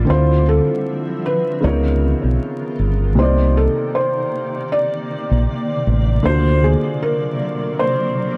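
A lightly swung 4/4 groove at 78 BPM sets a reflective, melancholic lo-fi hip hop mood in this short cut from a longer piece, moving through Dm9, C#13, Cm9 and D7alt under a haze of vinyl crackle and light reverb. A round, punchy fingered electric bass sits up front until 6.7 seconds, beneath a woody, boxy upright piano with cassette-tape colour and audible action noise, while a granular cloud pad adds blurred, detuned sustained chords. Carrying the melody from 0.1 seconds, a thick-felt muted upright piano sounds soft and intimate, its tone filtered and trailed by tape echo.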